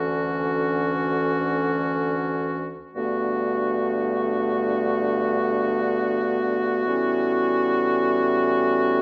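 A mellow woodwind section plays alone and up front in free time, its light vibrato and smooth top giving a dreamy, blissful hip hop excerpt in G lydian a classical touch, with digital delay and a small room's moderate reverb on a rough home demo mix, moving from Dmaj7 to Gmaj9 at 3.0 seconds and to A13 at 6.9 seconds.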